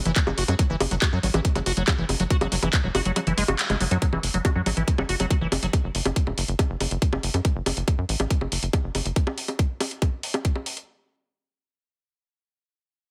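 A squelchy, resonant acid bass riff leads this hypnotic, driving psychedelic trance excerpt, its square-wave tone treated with chorus, sidechain pumping and tape echo until it stops at 5.7 seconds. Beneath it, a tight, punchy sequencer bass with a sawtooth and square-wave filter pluck holds the low end at 140 BPM in a straight 4/4, in F# minor. An up-front electronic kick and a layered drum kit of bongos, handclaps and metallic hi-hats keep the pulse moving. The kick drops out briefly from 3.2 seconds, and a band accent lands at 3.6 seconds during the gap. The opening drop then gives way to a second section at 4.0 seconds, where the sequencer bass carries on with the drums. The mix has light reverb and a heavily compressed, radio-like sound, with the drums re-recorded in a small room.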